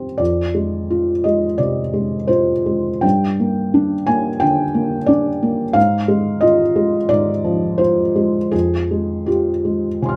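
A felt-muted upright piano plays alone, soft and mellow, sitting up front with its action noise audible, in this short intimate cut from a longer neoclassical minimalist piece. The mood is reflective, moving at 86 BPM in 4/4 with an uneven, rubato feel in F dorian, its chords shifting from Fm to Gm and Fm/Ab before settling back on Fm at 8.5 seconds. Light reverb gives the close, natural sound a little air.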